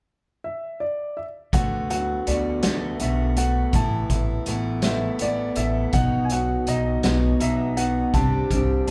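A dark baby grand piano carries the melody in this folk rock and heartland rock excerpt, entering alone at 0.4 seconds with a mellow, intimate tone, audible action noise and long sustain. At 1.5 seconds the band arrives together: a bright, picked steel-string acoustic guitar in accompaniment, an electric guitar through a small old amp playing a slightly broken-up, lo-fi, compressed riff, a woody pizzicato upright bass up front, and a vintage drum kit of hi-hat, kick and snare. The drums also sit up front, with a punchy kick, a medium-tuned snare, a rolled-off top and a pumping small-room character. The 6/8 pulse moves at 54 BPM counted in dotted quarters with a straight feel, and the mood is jangly and open-road as the harmony travels from D6 through Asus2 and B to Csus2. The group plays live in one room, set in a moderate large studio reverb.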